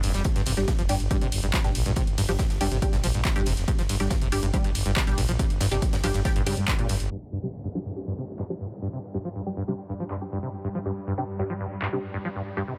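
A straight 4/4 pulse at 140 BPM drives this relentless peak-time techno in G minor, with a punchy, tape-warm electronic kick at the front and an overdriven, layered techno kit of handclaps, hats, ride and crash behind it, its hats and cymbals pumping. A very quiet, airy acoustic fusion kit with a high-tuned snare adds polished hi-hat and ride detail underneath. In the opening drop, a thick, growling FM bass anchors the low end while a squelchy, resonant sawtooth acid riff, lush with chorus and tape echo, pumps alongside muted, detuned dub chord stabs that carry phaser and echo over a G5 chord. At 7.1 seconds the FM bass stops and filter sweeps move across the acid line and the stabs, as a background downlifter falls away. From 8.3 seconds a tense, nasal, swarming drone with its own reverb slowly emerges beneath, and the whole mix sits dry and low-pass filtered in this short cut from a longer track.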